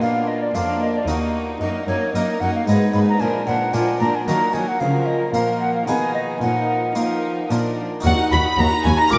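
A concert flute with a pure, straight tone and crisp attack carries the melody from the first moment, doubled by a dark, woody violin section set in the background, in this stormy, driving baroque-style concerto movement in triple time, cut from a longer piece. Beneath them, a second violin section plays an intimate, sul tasto second line with a soft attack and light vibrato. A brilliant Italian-style harpsichord with octave strings plucks the accompaniment alongside a focused, lush viola section, while a distant, expressive cello section holds the bass. At 8.0 seconds the music turns to a new section on an E-flat minor chord, and a rich, smooth-topped double bass section joins in the background to deepen the low end. The ensemble sits in a vast, echoing cathedral with a long, wet decay, and the sound is dark and softened at the top, with nothing above 8.0 kHz.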